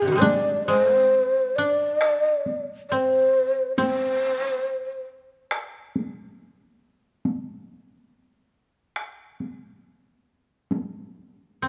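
A breathy, hollow shakuhachi carries the melody up front through the opening 5.0 seconds of this still, austere fragment of Japanese traditional chamber music, moving in a loose rubato around 69 BPM while a woody, fingerpicked koto plays a low second line and a taiko ensemble struck with hard sticks sits close in the mix, all set in a moderate recital-hall reverb.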